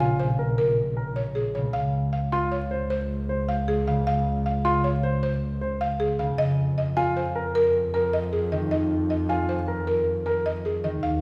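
A buzzing, woody marimba played with medium mallets carries the melody up front in this meditative yet urgent minimalist classical pattern piece at 155 BPM in 6/4, joined by ringing, fingerpicked concert harp, intimate grand piano arpeggios with audible action noise, and an expressive bowed double bass with vibrato and portamento, heard in a wet recital-hall reverb as the harmony moves from Bbm7 to Db at 1.7 seconds and Fm7 at 6.4 seconds in this short section cut from a longer work.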